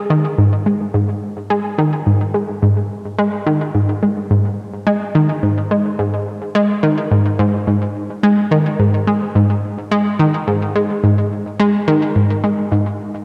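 A round, bright sawtooth analog pluck with a fast attack and decaying filter plays alone and up front from 0.1 to 12.9 seconds in this hypnotic, mysterious ambient fragment of a longer piece, its chorus and delay melting into a lush hall reverb within a dark production.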